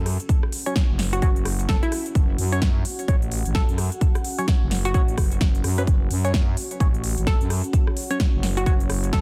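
Bouncy and gritty, this bass house excerpt moves at 129 BPM in 4/4 with a 60% swing on the sixteenths, sitting in F# minor over an F#5 chord. A growling, thick FM bass sits up front from the start, ranging from F#1 to F#2 with tube saturation and sidechain pumping. A hollow, detuned square-wave pluck carries the melody between E4 and A4, colored by ring modulation, a filter sweep, chorus and digital delay. A big-room dance kit of crisp hats, rim click and an overdriven snare comes in at 0.1 seconds, joined by a punchy electronic kick at 0.3 seconds, both treated with studio reverb. A percussive, organ-like stab with wave-folding, phaser and vintage 12-bit sampler grit plays from 0.7 to 8.7 seconds, while a deep, moody sawtooth pad with a slow attack and long release pumps quietly in the background. The mix is dense and heavily limited, set in a digital ambience.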